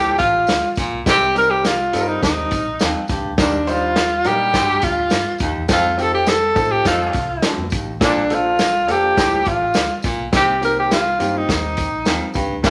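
Joyful and warm, this uptempo 1960s-style soul excerpt moves at 104 BPM in a straight 4/4, cycling through Bbmaj7, Cm7, Ebmaj7 and F7. A breathy tenor saxophone carries the melody up front, its whispered, scooped notes and vibrato giving the line a soft, intimate jazz feel, while a very quiet vibraphone with soft mallets shadows it in the same register with a ringing, metallic shimmer and slow motor vibrato. Beneath them, a distant, roomy baritone saxophone plays a low riff, a clear baby grand piano sits in the background with audible action noise and long sustain, and a dark, foam-muted fingered electric bass adds a round, amped bottom. A punchy vintage drum kit with a medium-tuned snare drives things from 0.2 seconds, joined by a jingly, close and dry tambourine. During a band accent from 5.7 to 8.0 seconds, a mellow, tight horn section makes a brief appearance between 6.9 and 7.2 seconds, and a moderate large-studio reverb with a 1.1-second decay gives the whole a sense of space.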